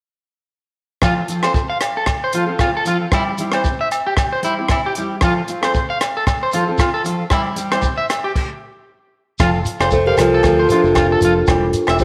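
A joyful, carefree highlife guitar band groove at 115 BPM in F major opens with a dark, full-bodied fingerpicked jumbo acoustic guitar with audible finger squeak, a twangy, slightly broken-up electric guitar playing up-front arpeggios with slapback echo, a compact cocktail drum kit with a punchy kick, ringing agogo bells and a grainy shekere in the background, then halts briefly at 8.4 seconds before a round, fingered electric bass joins at 9.4 seconds and, from 9.9 seconds, a woody, smooth kalimba takes the melody up front with slapback echo while a raspy, gritty tenor saxophone with vibrato plays a second line in the background, all in a moderate echo-chamber studio reverb.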